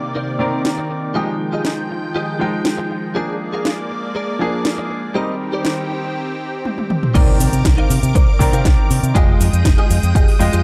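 A bright baby grand piano with tape echo and a lush, detuned unison pad under a filter sweep open this sensual, sleek nu-disco excerpt in C minor at 120 BPM, the two pumping to the sidechain over Cm9, Fm9, Bb7 and Eb6 chords, while a clean, compressed direct guitar riff with ensemble chorus joins and an overdriven house kit with cracking snare and metallic hats enters at 0.6 seconds, building through a drum fill into a drop at 7.2 seconds where a fingered bass with an envelope filter, a punchy overdriven electronic kick and a very quiet impact arrive, all in light reverb with a dark production.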